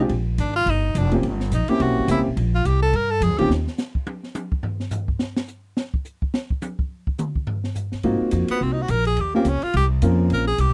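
A dry, close studio sound in a 1970s vein frames this short cut from a longer small-group swing and bop performance, and its mood is playful and warm. The breathy tenor saxophone sits up front with a bright, close-miked tone and vibrato, carrying a solo over woody, thumpy pizzicato upright bass on gut strings and a smooth, vintage grand piano comping beneath it. An open jazz kit with dark cymbals, a high-tuned snare and a boomy kick plays throughout in an airy small-room sound, lower in the mix than the other parts. Around 3.5 seconds the saxophone, piano and bass drop out and the drums take a solo on their own until about 8.0 seconds. The band then returns over rich extended harmonies, with the saxophone re-entering at 8.5 seconds to close the passage.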